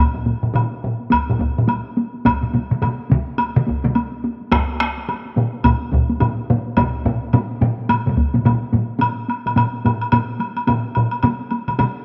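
A swung sixteenth-note groove in four drives this powerful, ceremonial fragment of Japanese traditional taiko ensemble music, where four layered taiko parts struck with heavy and hard sticks build from the first moments, one sitting close and dry while the others resonate in a small room, a woody woodblock clicks up front from 0.6 s, one taiko part drops out at 8.3 s, and the piece shifts into a new section at 9.0 s under light reverb.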